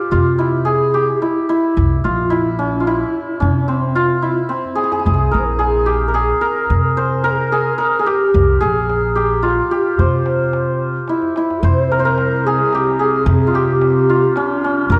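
A shimmering, hammered santur leads this stately Persian modal ensemble piece at 110 BPM in 3/4 in C dastgah homayun, with a breathy, mellow low ney tracing a second line, a woody, growly pizzicato upright bass up front, a tight, soft-handed tombak in the background adding two short drum fills, and a rich, bowed cello drone floating in from 11.6 s, the whole passage cut from a longer piece and heard inside a recital hall reverb.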